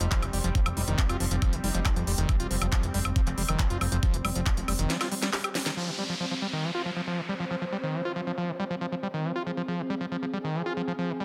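Dense, heavily limited and lightly reverberant, this driving, hypnotic psychedelic trance excerpt at 138 BPM in F minor puts a squelchy, distorted acid riff up front over a fat, detuned analog bass, a knocking electronic kick and a drum and bass kit of cracking snare, crisp hats, handclaps and woodblock, while a bubbling stepped-filter texture holds sustained chords, a formant-sweep wobble bass sits in the background for the first 2.0 seconds, and after a drum fill a downlifter enters at 5.8 seconds.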